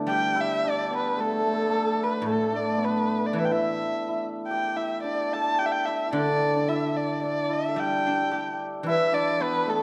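A loose, rubato pulse around 110 BPM in 4/4 carries this pastoral, festive Chinese chamber excerpt in D zhi mode, where a dark, woody erhu sings the melody up front with vibrato and portamento from 0.1 seconds, a bright, shimmering hammered dulcimer rings out a second line close by, and a silvery guzheng played with fingerpicks supplies ringing accompaniment, all set in a moderate recital hall reverb.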